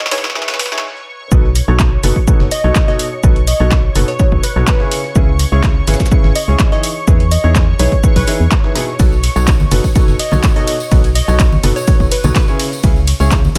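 The organ-like FM bass stands out, a hollow, dark and percussive tone that arrives at 1.3 seconds with sidechain pumping, alongside an up-front, tape-warm electronic kick, as this joyful, feel-good piano house excerpt moves at 125 BPM in B mixolydian. A clear, woody upright piano, slightly detuned and with long sustain, carries the riff from the start with delay and sidechain pumping. A glassy wavetable pluck plays the melody with a crystalline, ring-modulated shimmer, a filter sweep and a moving notch, dressed in chorus and delay. A punchy analog drum machine supplies handclaps, hi-hat, ride cymbal and snare with a short room, while a gritty, compressed breakbeat sampler-style kit adds hi-hat, shaker and snare in the background, and a silky, string-like pad with ensemble chorus and phaser holds sustained chords behind everything. After a short build-up with a drum fill and a brief break, the drop lands at 1.3 seconds, cycling through Emaj7, B7 and C#m7, and ringing tambourine and congas played with hard hands join at 9.0 seconds.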